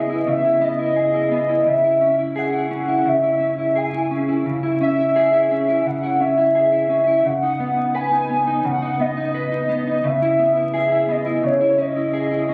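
A warbling, nostalgic lead voice carries the melody between C#5 and G#5 across the whole 12.5 seconds, its detuned triangle and sawtooth tones full-bodied and sustained, shimmering with chorus, tremolo, vibrato and analog delay. Beneath it, a dark, clean electric guitar plays fingered arpeggios spanning C#3 to B4, sitting up front with ensemble chorus and its own analog delay. This is an ethereal, hazy piece of dream pop in C# minor, moving at 86 BPM in a straight 4/4 and tuned to A4 = 439 Hz. The harmony circles E over C#, C# minor and B over C#, settling back on C# minor at 11.4 seconds. Spring reverb and digital ambience surround the parts, while the phone-in-the-room capture adds club reverb, vinyl crackle and compression, giving this fragment of a longer piece a dusty, faded sheen.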